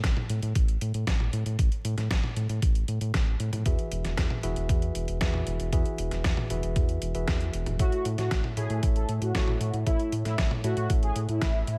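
A digital ambience dusted with vinyl crackle frames this danceable, romantic italo disco excerpt in straight 4/4. A thumpy, tape-toned electronic kick and a detuned 8-bit drum machine, whose hi-hat, medium-tuned snare and toms sit in gated reverb, drive the groove beneath a deep, dark round analog bass with tube saturation, placed up front. A clean tine electric piano adds low-pass filtered stabs from 3.7 seconds, and at 7.8 seconds a mellow, brassy synth brass melody enters, detuned and evolving with vibrato, chorus, phaser and digital delay.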